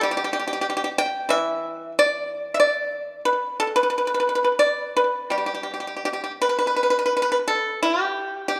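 A solo pipa opens this short fragment of Chinese traditional music, its fingerpicked strings sounding bright, percussive and up front, with a slapback echo trailing each note. The mood is pastoral and elegant, set in the G gong mode with the instrument tuned to A4 = 439 Hz. The playing is rubato over a loose 4/4, drifting between roughly 78 and 96 BPM as the line ranges from E3 up to G5. At 6.8 s the music moves into a new section, which carries on until the fragment ends at 8.6 s. The pipa itself sounds dry and close, set within a moderate recital hall reverb of about 1.8 seconds and a dark overall production.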